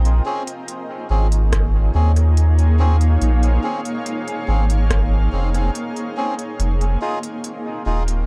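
A blurred, evolving granular pad and a round, up-front sub bass open this hazy, meditative ambient dub fragment, soon joined by smooth, overdriven hi-hats and rim clicks trailing dub echo, reedy, breathy melodica stabs roughened by 12-bit sampler grit and their own dub echo, and a very quiet, tape-toned deep electronic kick heard only from 1.5 to 5.1 seconds, while the harmony shifts from Bbm9 to Fm7 at 6.6 seconds.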